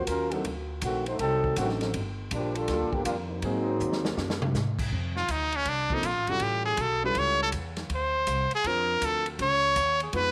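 A wet spring reverb and small room ambience give this big band swing excerpt an intimate, vintage sheen, with a swinging, energetic mood at 161 BPM in 4/4. A dark, up-front trombone section opens with a soft-attacked solo line full of vibrato, and it stops at 4.5 seconds, as a drum fill that starts at 3.8 seconds comes to an end. Underneath, a woody, thumpy pizzicato upright bass and a smooth concert grand piano with deep bass carry the harmony through chords such as D7b9, Gm7 and Bbmaj7. The acoustic drum kit sounds airy and polished, with dark cymbals, a medium-tuned snare and a punchy kick. At 5.2 seconds a brilliant, forceful trumpet takes over the melody up front, with light vibrato and scooped notes in a jazz style.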